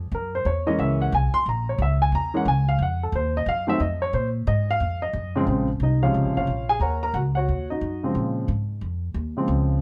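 Dark, smoky club ambience surrounds this cool jazz fragment in Bb minor, swinging at 179 BPM, where an up-front baby grand piano with a warm tone takes a solo through the first 5.5 seconds over the woody, pizzicato upright bass before the harmony settles into Bbm7 and Ebm7 changes.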